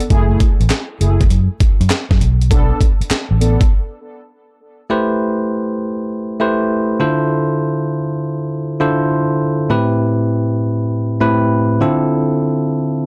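A bell-like tine electric piano takes over at 4.9 s, its bright, clean tone sitting up front as it carries the accompaniment over Am9 and Dm7 chords in A minor for the rest of this cut from a longer new jack swing R&B track. Before it enters, a gritty, compressed breakbeat drum kit with a thumpy kick, high-tuned snare, hi-hat and handclaps sets a confident, bouncy groove at 100 BPM in 4/4, swung on the sixteenths. Beside the drums, a vintage muted fingered electric bass, round and punchy, sits under F#m9 and Bm7 chords. Mellow synth brass stabs, with a detuned sawtooth edge, a filter sweep, chorus and digital delay, sit further back in the mix. Drums, bass and brass stop by 3.7 s, leaving a short break before the electric piano arrives, and the production is dark and warm, with little reverb.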